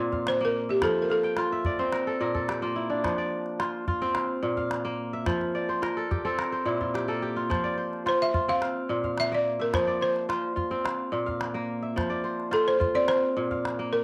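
Flowing and joyful, this short cut from a longer piece of West African string and xylophone music moves at 108 BPM in a straight 4/4, centred on F major. The fingerpicked kora carries arpeggios across the whole 14 seconds, its bright, ringing, crisp tone sitting up front, and it adds fills between 1.1 and 3.0 seconds and again from 5.5 to 7.5 seconds. The balafon takes the melody, struck with hard rubber mallets for a woody, buzzing, dark voice that is dry and smooth; it plays at the opening until 2.2 seconds, then returns at 8.1 seconds and carries through to the close. A small calabash supplies percussion in a live room setting, sitting further back in the mix. The harmony moves between Bb and F, with brief unharmonised passages along the way. Captured at home on cassette, the recording has light reverb and a small room ambience, and both the kora and balafon carry a cassette tape character.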